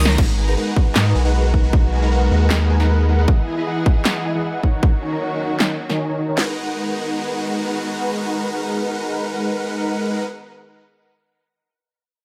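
Emotional and bittersweet, this short future bass excerpt moves at 155 BPM in a half-time feel in G# minor, with huge detuned supersaw chords pumping against the sidechain under a lush chorus, delay and a low-pass filter that sweeps from 0.2 to 6.4 seconds over G#m9, Emaj7 and D#m7. A deep, saturated triangle sub bass anchors the opening until 3.3 seconds, while a clear bowed string section with vibrato sustains chords in the background. Up front, a trap kit with a hard-clipped kick and sharp snare layers with a punchy big-room kit of crash, handclaps and snare, both dropping out by 6.5 seconds as the chords return to G#m9.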